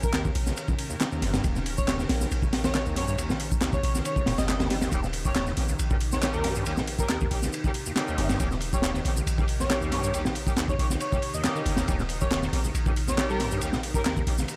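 The sound is dry and gritty, like hardware captured in a small room, and it opens this 14.6-second cut from a longer piece already in full swing. It is a funky, swaggering breakbeat track at 138 BPM in a straight 4/4, tuned to A4 = 437 Hz and opening on an Eb7 chord. Up front, a crunchy acoustic breakbeat kit pairs a punchy kick and a high-tuned snare with dark ride cymbals and a saturated, rolled-off top. An electronic house kit adds layered handclaps, hi-hat and shaker behind it. A deep, boomy 808-style bass anchors the low end. A squelchy, resonant acid bass riff with a sawtooth tone and filter sweep runs through distortion, ensemble chorus, 12-bit sampler grit and analog delay. An airy, dreamy lead melody, soft and detuned with vibrato, floats through chorus, a telephone filter and analog delay, while a swirling, evolving sawtooth pad holds sustained chords in the background with phaser, chorus and sidechain pumping. 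A very quiet electronic swell at 4.6 seconds leads into clear horn-section stabs from 4.9 seconds, played in octave doubling with light vibrato and a touch of sampler grit and delay.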